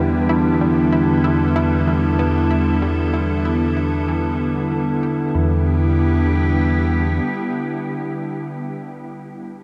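Ambient, sequencer-driven space music in E minor at 95 BPM, this mysterious, hypnotic fragment is cut from a longer piece and opens on an Em7 chord. An evolving, morphing wavetable pad sits up front with detuned, bright sustained chords, while a round analog pluck riff with tape echo and chorus plays in the background and a fat, thick sawtooth bass holds E2 until 7.2 seconds. A huge reverb places everything in a vast, echoing space, and a synth arpeggio sound fades out over the first 5.3 seconds.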